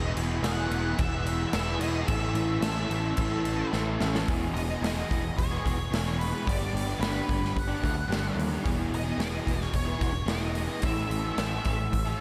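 A crunchy, double-tracked overdriven guitar riff shimmering with ensemble chorus, a direct picked electric bass and a fuzzy octave lead guitar melody with analog delay open this dreamy, blissful shoegaze and dream pop excerpt, joined at 0.2 seconds by a big, airy rock drum kit with bright cymbals and a punchy kick, whose fill at 3.7 seconds leads into a turn toward major-seventh chords at 4.3 seconds, the whole mix soaked in a lush hall reverb.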